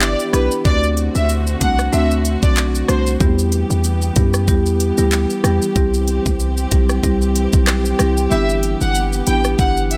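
A swung, bouncy 94 BPM dancehall groove in G major, cut from a longer piece, rides on an electronic pop drum kit with a knocking kick, crisp hats, handclaps, rim click and shaker, alongside a deep, boomy 808-style bass up front and a woody marimba accompaniment entering at 0.3 seconds, while a sidechain-pumped string section holds soft sul tasto chords and a lush violin section with tape echo sings the sunny melody at the start and again from 8.3 seconds, where the kick drops out until 9.6 seconds.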